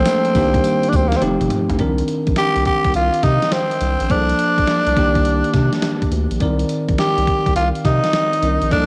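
R&B in a new jack swing vein, this confident, slick excerpt moves at 104 BPM in C dorian with a swung sixteenth feel, as a raspy, growling tenor saxophone sings an up-front vibrato melody over bell-like tine electric piano chords, a round, deep analog bass, and a dusty, compressed sampler-style drum kit with a thumpy kick, fat snare, hi-hat, tambourine and toms that fills from 1.2 to 1.8 seconds, all bathed in spring reverb and the sound of a home cassette recording, with the saxophone, piano and drums carrying a tape character.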